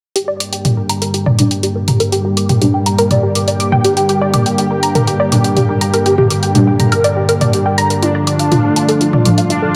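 Driving and melancholic, this short melodic techno excerpt in G minor at 122 BPM sets a punchy, tape-warm analog drum machine of hi-hat and toms under a lush, warbling unison pad, a low evolving drone on G2, a tight detuned sawtooth arpeggio with chorus, phaser, tape colour, delay and a filter sweep, and background brass stabs from 1.4 seconds, before a bold, fat analog brass melody with vibrato arrives at 8.0 seconds as the harmony shifts from Gm to Dm, all set in a lush hall reverb.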